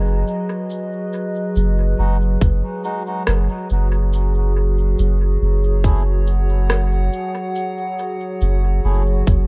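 A deep, round sub bass sits up front in this hazy, meditative ambient dub excerpt at 70 BPM, under a warbling, nostalgic, lo-fi pad holding B6/F# and then F#5 chords with chorus and reverb, while tape-softened electronic shaker and rim click with dub echo arrive at 0.3 seconds, a tight electronic kick drum lands at 2.4 seconds, and reedy, breathy, dark melodica stabs with dub echo drift through from 2.0 to 9.0 seconds in a digital ambience.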